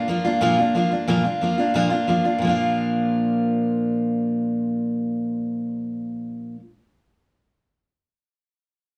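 A picked steel-string acoustic guitar opens this short rock fragment alone, its full-bodied dreadnought tone sitting up front with the warm, fresh-string sound. The mood is retro and upbeat, carried by a brisk, straight feel in common time. The guitar ranges from Bb2 to F4 and is the only part heard throughout the 6.6 seconds. The phrase moves through three brief sections, shifting at 1.1 and 2.4 seconds, before it is cut off mid-piece. A moderate studio reverb and a small-room ambience give the playing a close, intimate setting.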